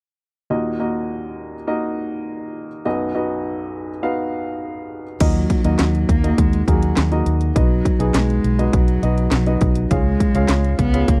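This bittersweet, driving piano-driven pop passage, cut from a longer piece, opens at 0.5 s with a warm upright piano alone, playing accompaniment in Eb minor at 102 BPM in a straight 4/4 and moving between Ebm and B chords. At 5.2 s the music grows fuller as a dark, bowed solo cello takes the melody, played sul tasto with vibrato and a woody, close tone. A vintage muted fingered electric bass enters at the same moment, its round, foam-muted, amped sound sitting up front. With them comes an electronic house drum kit of kick, snare, hi-hat, handclaps and crash cymbal, layered and overdriven, with a punchy kick and a cracking snare. The harmony cycles through Ebm and B before reaching Db, and the whole recording has the dry, close feel of a 1970s-style studio session.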